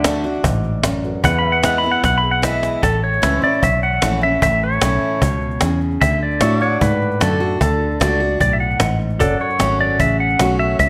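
Honky-tonk and classic country with a sunny, easygoing mood: an up-front, twangy pedal steel guitar carries the melody with fingerpicked slide lines and volume swells, taking a solo over the opening 2.8 seconds while a second, background pedal steel holds sustained chords. A bright, full-bodied dreadnought acoustic guitar with fresh strings and audible finger squeak plays throughout, over a round, foam-muted fingered electric bass and a snappy, close and dry cajon played with soft hands that drops a fill at 2.6 seconds. A very quiet, dark and worn vintage baby grand piano appears only at the start and again from 9.2 seconds, all set in a moderate recital-hall reverb.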